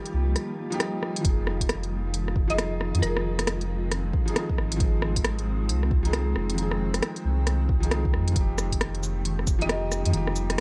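Ghostly and wistful, this short cut from a longer future garage piece sets a felt-muted upright piano, soft and intimate with audible action noise and tape echo, over a blurred, evolving granular cloud pad, both breathing with sidechain pumping. A round, deep dub sub bass with tube saturation sits up front beside an organic electronic kit of cabasa, smooth hi-hat and rim click, while a produced electronic kick joins at 1.2 seconds under swung sixteenths and chords moving from Ebadd9 to Fm7. A woody, mallet-like FM pluck with chorus and tape echo surfaces briefly at 2.5 seconds and again at 9.6 seconds, all inside a digital ambience.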